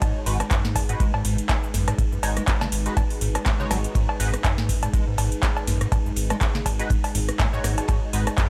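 Opening at once with a deep, overdriven electronic kick and an up-front, booming analog drum machine of crisp snare, metallic hi-hats, handclaps, cowbell, rim click, shaker and ride cymbal, this gritty, hypnotic acid house excerpt at 122 BPM in G# minor swings its 16ths over a single G#m7 chord, as a squelchy, resonant acid bass riff with tube saturation sits in the background beside a moody, detuned analog pad, both sidechain-pumped, while nasal, band-passed chord stabs pass through phaser and analog delay, a round analog bass with its own pumping joins at 0.3 s, and a very quiet, dry reggae kit adds ride cymbal and a high-tuned snare, all in a raw hardware sound with little reverb.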